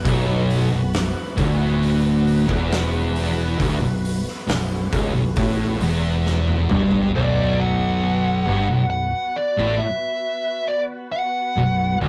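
A sludgy, ominous stoner and doom metal passage at 68 BPM in B minor opens with a heavy riff in the low register, carried by an up-front thick fuzz guitar with distortion, a second, very quiet and dark fuzz guitar, and a bright, double-tracked semi-hollow guitar sitting in the background. Underneath, a modern fingered electric bass adds a growly, overdriven bottom, while a soft vintage string machine holds silky, slow-attack chords with an ensemble chorus far behind the guitars. An oversized low-tuned drum kit pounds through the first section with a fat snare, punchy kick, toms and hi-hat in a big, pumping room sound, closing with a fill from 6.3 seconds before the drums drop out at 7.1 seconds. As the harmony settles onto a B5 power chord, a distorted, up-front fuzz lead guitar enters at 7.2 seconds with a melody in a higher register above the grinding riff. The whole piece has a rough rehearsal-room character with moderate reverb and warm saturation, and it is cut from a longer piece.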